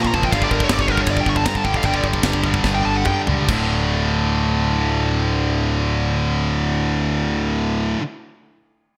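Bright, 1980s-style digital production with light small-room reverb frames this dark, epic heavy metal fragment, cut from a longer piece. A shadowy, delay-tinged high-gain lead guitar solos over a slowing passage until 3.2 seconds, while a tight acoustic kit with gated reverb, crisp cymbals and a high-tuned snare plays a fill before stopping at 3.6 seconds. Throughout, two up-front picked rhythm guitars, one heavy and one tight, drive a low riff alongside a growling, overdriven fingered bass as the harmony moves from G5 to D5.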